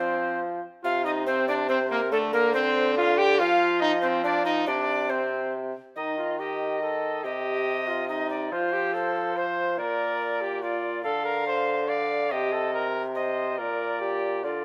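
In a steady, straight triple metre, this solemn, courtly renaissance-style consort dance, cut from a longer piece, sets a cornet with light vibrato on the melody alongside an alto recorder's airy, chiffy second line and a vintage-toned bassoon holding the bass. All three play throughout, sitting up front in a moderate stone room that lends the cornet a distant, roomy glow, while the recorder's crisp attack and lifted highs keep its straight tone expressive. At 6.0 s the dance moves into a new section, its harmony turning to simpler major and minor chords until the close at 14.6 s.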